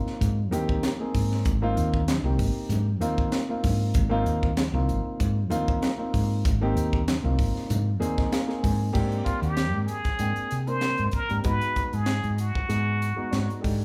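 This bright, slick jazz fusion excerpt opens with a dark, mellow grand piano and a woody, growly fretless bass, joined at once by a crisp, gritty drum kit with a punchy kick and bright cymbals, while very quiet, thin-skinned congas sit underneath until 8.8 s. After a piano fill, a brilliant plunger-muted trumpet takes the melody at 9.2 s, forceful and up front, with wah-wah and vibrato and jazz-style phrasing, as the harmony moves to a bright major chord and later shifts to a minor one. The band sounds as if it is playing live together in one large studio room with moderate reverb.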